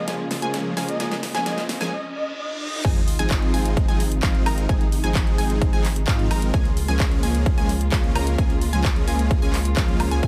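Bathed in light reverb, this anthemic, uplifting festival progressive house excerpt at 130 BPM opens with a build-up of breathy, flute-like synth lead, a very quiet warm grand piano, a big-room dance drum kit fill with a huge snare, and a faint riser, reverse cymbal and sub drop, all over dark, woody studio strings, a bright detuned unison pluck arpeggio and full-bodied supersaw chords that pump together, until the drop at 2.8 seconds brings in a deep saturated sub bass and an overdriven, up-front electronic kick drum.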